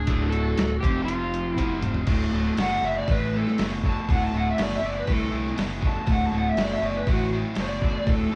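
A muffled, thumpy, pitched-down drum kit sits up front in this swaggering, raunchy blues rock and southern rock excerpt at 120 BPM in D mixolydian, alongside a bright, double-tracked rhythm guitar riff, a growly fuzz bass, and a gritty tonewheel organ with key click and slow rotary swirl in the background, while an overdriven slide guitar carries the melody until 1.8 seconds, a drum fill lands at 1.6 seconds, and a dark, picked lead guitar takes a solo from 2.1 seconds, all in a large studio room with moderate reverb.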